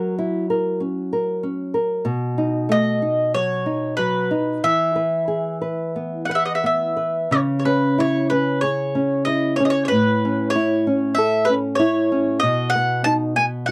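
A dry, close 1970s-style studio sound frames this tender, nostalgic fragment of a fado-style ballad in a loose rubato 4/4, where a small, fingerpicked nylon-string guitar accompanies alone until a round, picked mandolin with double strings enters up front at 2.7 seconds to carry the melody over chords moving from F#7 and B7 toward C#m, Aadd9 and a final B.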